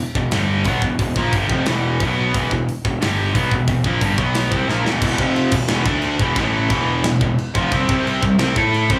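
This short cut from a longer heavy metal track has a dry, close sound with only a touch of small-room reverb. It is aggressive and heavy, driven at a fast, straight pace. A bright, double-tracked distorted guitar sits up front, playing a picked power-chord riff that moves among G, E minor and B before shifting at 5.0 seconds to a busier run through E, F, D, A and C. Underneath, a fuzz-laden picked electric bass growls and punches in the low register, its overdrive adding grit. The acoustic drum kit, mid-forward with a big-room character, pairs a tight kick and medium-tuned snare with hi-hat, crash and china cymbals. A drum fill just before 5.0 seconds ushers in the second section.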